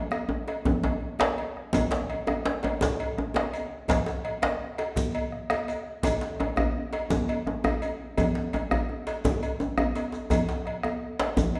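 The rhythm rolls in 12/8 at 112 beats per minute, counted in dotted quarters with a straight feel, driving this earthy, powerful West African drum ensemble cut from a longer piece. A drum fill opens the passage before the full groove settles in at 1.7 seconds, when a grainy, mellow shekere joins from the background in its own live-room space. Up front, one djembe sounds deep and soft-handed with a compressed, saturated weight, while a second djembe cracks tight beside it, also compressed and saturated. Ringing, high-tuned congas played with hard hands sit close and dry, a metallic, band-limited cowbell adds a vintage edge, and a dark bombo anchors the bottom from a small room further back. Another brief drum fill breaks through at 9.8 seconds, and the whole ensemble carries a wet recital-hall reverb that lends the drums a resonant, spacious tail.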